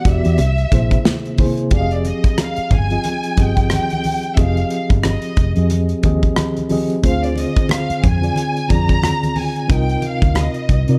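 A reedy, up-front electric piano with fast tremolo anchors the harmony of this smooth, bittersweet 1970s-style soul excerpt, joined by a round, foam-muted fingered electric bass and a polished acoustic drum kit with tight kick, hi-hat, rim click and snare in a gently swung 4/4, while bright, low-tuned congas sit in the background and a distant, lush bowed violin section sings the vibrato-laden melody over chords moving from C7b13 to Fm9, Dm7b5 and Cm11 in a dark, intimate small-room production.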